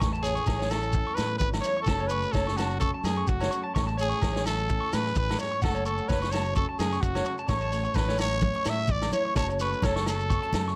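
A raspy, growling trumpet leads up front over a joyful, carefree highlife groove at 128 BPM in A major, with twangy arpeggios from a slightly broken-up electric guitar bathed in spring reverb, a small fingerpicked nylon-string guitar in the background, punchy fingered electric bass, a vintage kit with a punchy kick and rolled-off top, ringing agogo bells and a grainy shekere, before bright, damped congas join at 7.5 seconds.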